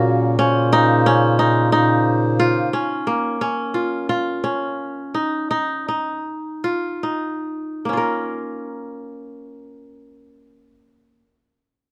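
Close, detailed microphones and light reverb frame this restless, hypnotic contemporary chamber piece in 7/8 and Bb minor at 143-179 BPM in eighths, where an up-front kora spins crisp, ringing, fingerpicked arpeggios over chords moving from Bbmadd9 to Ebsus2, joined until 2.7 seconds by the reedy, breathing sustained chords of a hand-pumped harmonium and the soft-attacked, smooth-topped bass line of a warm bass clarinet, before the kora carries on alone as the tempo slows between 2.7 and 7.8 seconds in this passage cut from a longer piece.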